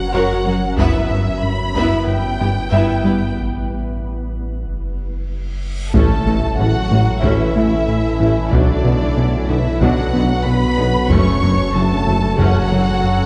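This vast, relentless cinematic passage from a hybrid orchestral and electronic film score opens on a lush, expressive violin section carrying the melody with vibrato and a soft attack. Beneath it float a shimmering, ethereal pad with chorus and an octave-up shimmer, and a clean, pure sine sub bass. A second violin line, a rich viola section, a cello section and a round analog bass riff join almost at once, while a taiko ensemble struck with hard sticks sits in the background. The harmony falls away for a break at 3.4 seconds, then a huge, bright reverse cymbal sounds at 5.7 seconds, leading into an impact at 5.9 seconds. From there the taiko returns, a mellow French horn section holds sustained chords, and a woody double bass section and a distant, roomy solo tuba deepen the low end beneath the strings. The ensemble is heard from further back in a wet concert hall.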